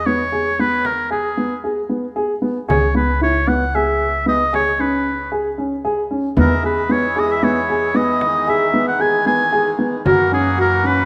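Contemporary instrumental chamber music in 7/4, this short passage cut from a longer piece moves at 114 BPM with a straight, urgent and restless feel. A solo oboe carries the melody up front in a classical style, its warm tone touched by light vibrato. Beside it, a dark, mellow concert grand piano plays boxy arpeggios, while a pizzicato upright bass on gut strings gives a woody, thumpy low end. A small, bright frame drum played with soft hands sits close and dry in the background. At 6.4 seconds a reedy, nasal harmonium enters with breathing sustained chords as the harmony moves from E through C#7(no3) to Emaj7 and F#7, all set in a moderate concert hall reverb.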